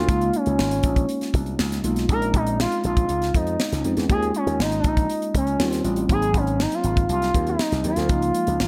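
Polished 1980s jazz-funk pop at 120 BPM in a straight 4/4, this short excerpt carries a nocturnal, urban mood. Up front, an expressive sawtooth lead sings the melody between Db4 and Bb4, its smooth, sustained tone shaped by vibrato, portamento and chorus. A mellow tine electric piano with analog chorus supplies clean accompaniment from F3 to Gb4, while a growly, punchy slap bass runs through an envelope filter between Ab1 and F2. A tight funk kit enters at 0.1 seconds, its hi-hat, high-tuned snare and tight kick sitting dry, airy and prominent under gated reverb. The harmony moves from Db6 through Bbm11, Eb9sus4, Eb13 and Ab7 before returning to Db6 at 8.1 seconds, all set in a small room with light reverb.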